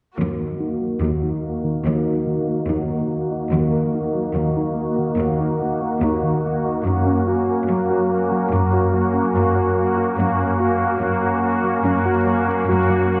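From 0.2 s, a lush viola section, a warbling analog pad, a glassy wavetable pluck playing arpeggios in the background through chorus and tape echo, and a focused cello section playing the bass line enter together in a futuristic, relentless cinematic build-up at 72 BPM in Eb minor, moving from Ebm to Gb at 6.9 s beneath a filter sweep and heard from further back in a concert hall reverb, in a clip cut from a longer piece.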